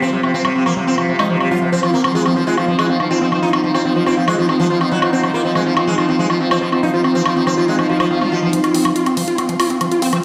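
A straight 4/4 pulse at 141 BPM drives this psychedelic trance piece, with electronic woodblock and warm hi-hats entering at 0.2 s under a buzzing, plectrum-plucked sitar melody up front with phaser and digital delay, a squelchy, distorted acid bass riff, a bright, morphing wavetable pad holding sustained chords, a breathy chorused pad and a filter sweep on the ambient pad, while a very quiet metallic wobble bass surfaces briefly from 3.2 s and a background electronic swell at 7.9 s leads into a build-up from 8.5 s, all set in a lush hall and a stony room.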